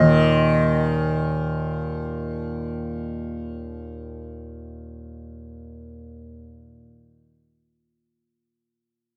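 In a straight 5/4 at 121 BPM, this meditative, longing Indian classical excerpt cut from a longer piece sets a reedy, distant bansuri voicing Eb5 with airy vibrato for only its first 0.8 seconds over a buzzing, shimmering, up-front tanpura drone spanning Eb2 to Eb3 that sounds through 7.2 seconds, all caught in a dry, close 1970s-style studio recording with light reverb.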